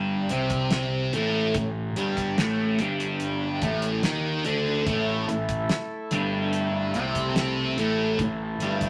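A double-tracked, bright fuzz guitar riff with phaser opens this hypnotic, trippy psychedelic rock excerpt at 72 BPM, joined at once by overdriven fuzz bass and, from 0.3 seconds, a dry, up-front 70s drum kit with a fat snare and tight kick, before a reedy, breathing pedal harmonium adds sustained chords at 4.9 seconds, all within a moderate studio reverb.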